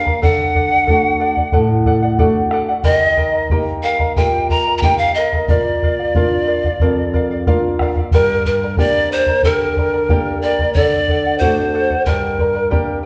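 A breathy, chiffy bamboo pan flute carries an earthy, melancholic Andean folk melody up front with unsteady vibrato, over shimmering double-strung fingerpicked charango, warm fingerpicked flamenco guitar and a round, saturated bombo, the ensemble playing live in one room with a wet, large studio reverb as the harmony moves from D through Eb, Bb and G minor in this fragment of a longer piece.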